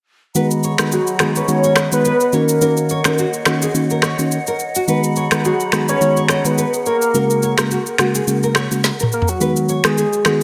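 Afrobeats with a sultry, smooth mood and a light swing: a round, dark FM electric piano with chorus carries the chords up front, while a bright, fingerpicked nylon-string guitar riff runs through a digital delay and an airy, hollow flute group holds sustained chords with vibrato. From 0.9 seconds a velvety synth lead, built from sawtooth, triangle and square waves with a sub octave, sings the melody through chorus, tremolo and delay. An electronic afro-pop kit with a woody snare, finger snaps, rim clicks, shaker and toms sits forward in the mix, plays a fill at 8.8 seconds and drops its kick from 9.4 seconds, all within light reverb and digital ambience in this short cut from a longer piece.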